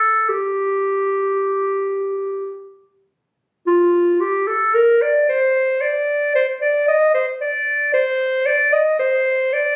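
Flowing and introspective, this brief excerpt from a longer classical piece is a baroque-style fantasia for unaccompanied clarinet, moving in a free, rubato 4/4 at roughly 52-57 BPM. The warm clarinet sits up front, playing alone from 0.0 to 9.8 seconds in a range from F4 to Eb5, stating one passage and then returning to it at 3.7 seconds. The sound carries a light, club-like reverb and a dull, muffled top, as if heard through a phone in the room.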